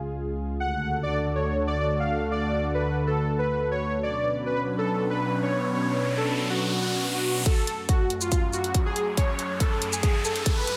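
A half-time groove in 4/4 gives this heavy wobble dubstep passage, cut from a longer piece, a heavy, menacing weight. A thick, warbling pad of detuned sawtooth voices opens at 0.0 seconds with sustained chords, its vintage chorus shimmer and sidechain pumping sitting up front. Soon a smooth, evolving supersaw carries the melody through a digital delay, while a layered electronic shaker and hi-hat, dulled by low-pass filtering and re-recorded in a small room, keep the drums subdued. An electronic riser enters at 4.7 seconds, and from 7.5 seconds a punchy, up-front kick joins as the music builds, the pad passes through a filter sweep, and the harmony settles on F#madd9. Light reverb frames the whole mix.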